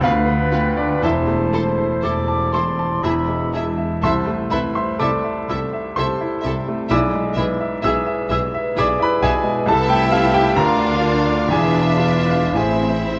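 An intimate, up-front baby grand piano with audible action noise carries the melody alongside a focused, lush symphonic violin section in this brooding, passionate classical passage cut from a longer piece, set in A minor in a slow, rubato 3/4 of 54-66 BPM. A pure-toned flute, a distant oboe, a very quiet clarinet and a rich, very quiet second violin section add second lines, while a dark viola section accompanies and a roomy French horn section holds sustained chords. A mellow tuba, a smooth cello section and a double bass section with a soft attack and portamento form the bass, in a moderate concert hall reverb, before the harmony settles on A minor at 12.6 seconds.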